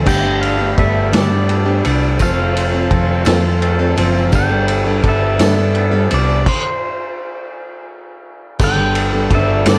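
A lilting 6/8 sway carries this hopeful, open-road slice of folk and heartland rock, where a picked, plugged-in acoustic guitar with plate reverb and a round, hollow-body electric bass sit up front beside a gritty, saturated vintage drum kit, a bright, twangy electric guitar riff rings in the background with a distant, jingly tambourine, a very quiet, biting symphonic string section holds chords until 6.4 seconds, and a pedal steel guitar sings the melody with slide and volume swells before the band drops out at 6.5 seconds and returns at 8.6 seconds, all within a dark, lightly reverberant production.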